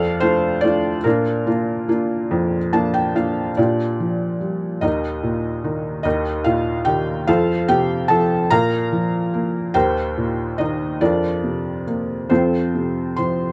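Classical solo piano in a lyrical, peaceful vein, unfolding in a slow, rubato 6/8 on a felt-muted upright with a soft, mellow, intimate tone, audible action noise and a close, up-front presence. A short piano fill at 2.3 s leads into a longer second section at 3.6 s, where the harmony moves through gentle added-ninth and suspended colours before settling on F. The dark production wraps the instrument in moderate studio reverb, and this brief passage is cut from a longer piece.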